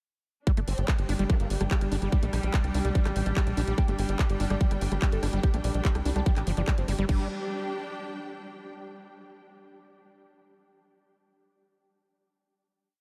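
Psychedelic trance at 145 BPM in a straight 4/4, this short, driving piece drops in at 0.5 seconds and holds its groove until a final chord rings out from 7.1 seconds. An up-front electronic kick pounds four-on-the-floor beneath programmed hats, claps, rim clicks and a crash from a garage drum kit, while a tight, punchy sequencer bass with tube saturation rolls out sixteenth notes up front in the mix. Behind it, a squelchy, distorted acid bass works a resonant 16-step line with accents, pumping against the kick and trailing a diffuse ambient delay. A bubbling stepped-filter drone on G3 carries chorus and gritty 12-bit sampler texture, and distant, lush symphonic strings shift slowly through chords, lingering alone to 8.7 seconds. Brief, very quiet formant-sweep wobble bass phrases flicker between 0.7 and 1.5 seconds, and from 3.8 seconds a screaming, guitar-like overdriven lead with phaser and tape echo repeats a riff melody over a pedal note in sixteenths.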